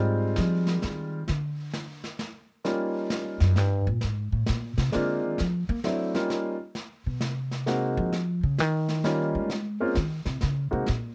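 A thumpy, woody pizzicato upright bass takes the solo throughout this relaxed, playful swung jazz piano trio excerpt in 3/4 at 131 BPM in Eb mixolydian, with a smooth, vintage upright piano carrying the melody up front until 10.9 seconds and a dark, rolled-off snare drum played with brushes entering at 0.4 seconds, heard dry through close, detailed microphones over chords such as Fm7, Eb9 and Ab9.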